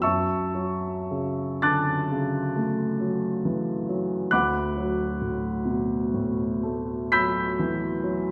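A warm grand piano plays alone in this short impressionist classical fragment, cut from a longer piece, its natural tone sitting up front with a long sustain. The mood is dreamy and hazy, with a slow, rubato pulse of 36-46 BPM counted in dotted quarters within a 9/8 metre. In D major, the harmony rests on F#m7 before shifting to D6 at 4.3 seconds, and the piano ranges from D2 up to B6. A generous scoring-stage reverb with a 1.7-second decay surrounds the instrument, lending the sound a hazy halo. The fragment lasts 8.3 seconds.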